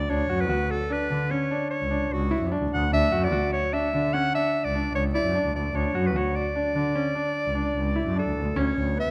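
Set in an uneven 7/4 at 149 BPM with a straight feel, this short excerpt of contemporary chamber music, cut from a longer piece, moves in D major with a restless yet hopeful mood, tuned to A4 = 437 Hz. A breathy, bright clarinet carries the melody from the very start, close-miked and up front, playing solo in a jazz style with light vibrato and scooped notes. From 0.1 seconds, a grand piano with a worn character supplies arpeggios in the middle register, while a single bowed double bass holds the bass line, smooth and even with vibrato, sitting close and up front. The harmony rests on Dmaj7 throughout, shifting to a sparer Dmaj7 voicing at 8.6 seconds before the parts stop at 9.1 seconds. A moderate concert hall reverb with a 2.5-second decay lends the trio a spacious glow.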